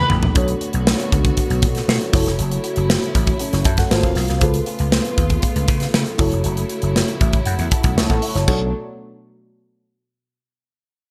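Polished 1980s jazz-funk pop with a nocturnal, bittersweet mood, this excerpt opens on a brief drum fill from a punchy, up-front kit with gated reverb as a growly, amped slap bass and a dreamy FM electric piano, layered with a soft pad and subtle chorus, settle over chords moving from Bm7 through F#m7, G#13 and C#7b13. A lush, bowed string section sustains chords with smooth vibrato beneath, while the warbling, detuned electric piano adds fills around 3.4 and 7.0 seconds. The bright digital production sits in a moderate plate reverb with small room ambience.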